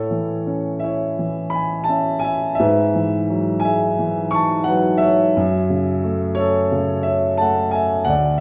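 Lyrical classical solo piano at 87 BPM in 4/4, played with a rubato feel and a bittersweet, moody air. A dark, mellow concert grand sits up front with deep bass and long sustain, moving from Amaj7 through Eadd9/G# to F#m7 across a range from D2 to C#6. The boxy tone blooms in a wet recital hall reverb, and the 8.4-second fragment, tuned to A4 = 443 Hz, is cut from a longer piece.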